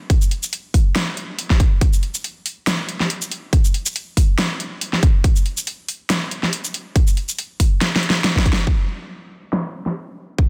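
A heavy, chaotic dubstep drop opens this fragment of a longer piece, with an up-front electronic kick and a layered dubstep drum kit entering together at 0.1 seconds. The groove sits at 140 BPM in 4/4 with a half-time feel and a 55% swing on the sixteenths. The kick is punchy and layered, while the kit pairs a huge snare with metallic hi-hats and shaker, the hats, snare and percussion all low-pass filtered to round off their edges and the whole kit carrying a tape-warm, produced character. A drum fill runs from 7.8 to 8.7 seconds, leading into a new section, and the kit drops out at 9.9 seconds so the kick carries on alone to the end. Both parts sit in a small room with little reverb, inside a dense, heavily limited modern master.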